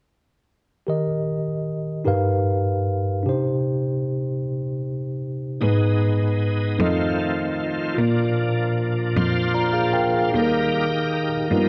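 A moderate scoring-stage reverb surrounds this short gospel excerpt in Eb major, a hopeful, reverent piece in a slow 6/8 at 51 BPM. A clean tine electric piano, heard through its built-in speakers, opens alone at 0.9 seconds with accompaniment and a fill near the end, while at 5.6 seconds a full, shouting tonewheel organ, lightly overdriven with chorus vibrato and a slow rotary speaker, joins with sustained chords alongside a focused, bowed solo cello playing bass with vibrato. At 10.3 seconds the harmony returns to Eb as the organ takes a brief solo.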